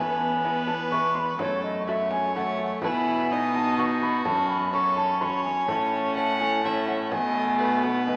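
Festive and courtly, this renaissance-style consort dance moves in a straight 3/4 at 126 BPM, with a close, gut-string violin carrying the melody while an airy wooden alto recorder with a crisp, chiffy attack sits up front on a second line. A distant viola with light vibrato and a close, reedy cello fill out the harmony and bass alongside a delicate fingerpicked lute with double strings in the background, and a small frame drum played with hard hands enters very quietly at 0.7 seconds. The chords pass from E through F#m and B to a closing B7, all bathed in a wet church reverb heard through a small-speaker sound in this short cut from a longer piece.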